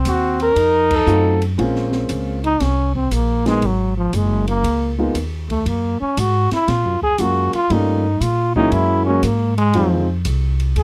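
A dry, close 1970s-style studio sound with light reverb frames this smoky, cool small-group swing and bop excerpt in Bb minor at 118 BPM, where a veiled, bucket-muted trumpet states a brief melody around a band accent before a buzzy, breathy, metal-muted trombone solos from 1.6 seconds over woody pizzicato upright bass, an intimate grand piano with audible action noise entering at 1.1 seconds, and a low-set open drum kit with a high-tuned snare and boomy kick.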